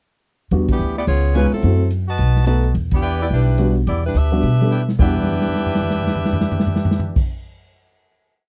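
Brassy and sultry, this brief big band swing piece in E minor races along at 215 BPM, with a clear saxophone section carrying a four-part block-voiced melody over a dark, mellow upright piano comping in rootless voicings, a woody, thumpy upright bass in a two-feel, and a smooth, boomy-kicked drum kit riding the cymbal, while a present trumpet section adds syncopated stabs from 1.3 s, band accents punctuate the line, and drum fills carry the final chord from 5.1 s to 7.1 s in a dry, close 1970s-style studio sound.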